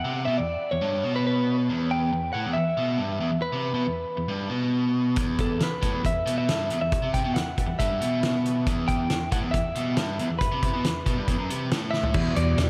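Moody and restless, this indie rock excerpt moves at 138 BPM in a straight 4/4, anchored in E minor over a dreamy mix soaked in a huge ambient reverb. From the start, a biting overdriven guitar sits up front with a low riff while a clean electric guitar carries the melody, its compressed, picked tone trailed by delay. At 5.2 seconds a loose indie drum kit arrives with a fat snare, punchy kick and dark cymbals, its rolled-off top keeping the kit mid-forward, and a very quiet, twangy twelve-string electric guitar adds a bright, compressed riff just after. A drum fill lands at 11.9 seconds, at 12.1 seconds a chorused synth bass enters on a glossy, wave-folded retro tone with a filter pluck and a dark, sustained body, and at 12.2 seconds the harmony shifts from Em to Emadd9. The piece is cut from a longer work, ending just as the low end fills in.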